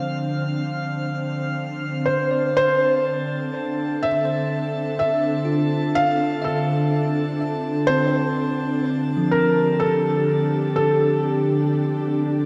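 In a slow, straight 3/4 at 62 BPM, this serene, reflective ambient piece sets an ethereal, airy pad with ensemble chorus holding sustained chords up front over Dm7 moving to F/D, while a bell-like tine electric piano fades in with phased, diffusely delayed arpeggios in the background, a glassy, drifting harmonics texture with chorus fades out high above, and from 2.1 s a felt-muted upright piano carries an intimate melody with audible action noise, set in a lush hall reverb with dark production.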